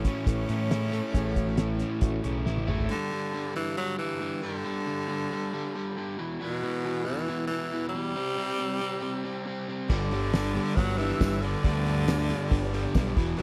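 Classic rock with a driving, swaggering feel, this excerpt moves at 137 BPM in a straight 4/4. A raspy, gritty tenor saxophone carries the melody throughout, close-miked and up front with scooped notes, vibrato and a tape echo, while an overdriven, compressed electric guitar holds down a picked riff the whole way. For the opening 2.9 seconds and again from 9.9 seconds, a hollow-body semi-hollow guitar plays a riff of its own, joined by a growling, overdriven fingered bass, a cloth-damped, thuddy drum kit with a fat snare, tight kick and dark cymbals, and a very quiet, reedy electric piano with fast tremolo. Between those stretches the saxophone and the first guitar carry on alone, after a drum fill at 2.5 seconds leads into the G5, E5 and C5 power-chord changes. From 9.9 seconds a dark octave-fuzz lead guitar adds a high second line in the background, and a jingly tambourine sits behind it briefly. 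The dry, close sound and small room ambience give it a 1970s studio character.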